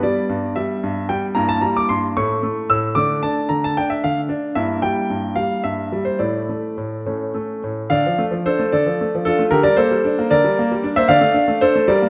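A classical-period piano sonatina in D minor, this short excerpt cut from a longer piece carries a restless, dramatic mood at 75 BPM in 6/8, shaped with flexible rubato. A clear concert grand piano plays solo throughout, sitting up front with a natural tone and deep bass, spanning from G2 up to E6. The opening section moves through tense harmonies, passing from Em/G and Edim/G to A, then settling briefly on D5 before a suspended Asus4 resolves to A. At 7.9 seconds a new section arrives on D minor, shifting to Gm/D and returning to Dm by 11.1 seconds. A moderate recital hall reverb with a 1.6-second decay gives the instrument a sense of space around its clear sound.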